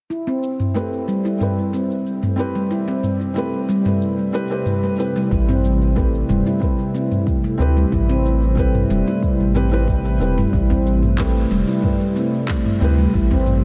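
Opening on an Am7 chord, a dark, detuned sawtooth pad in the background breathes with sidechain pumping beneath ringing handpan arpeggios struck with soft fingertips and trailed by diffuse ambient delay, while a produced afro-pop kit of cabasa, handclaps and toms sets a hypnotic, earthy organic downtempo groove at 92 BPM in A minor. A felt-muted upright piano with audible action noise adds intimate accompaniment from 0.7 s, and at 5.3 s a round, up-front analog bass and a deep electronic kick arrive together. A deep udu joins in the background at 10.7 s, all of it bathed in a dreamy, reverb-soaked haze in this excerpt from a longer piece.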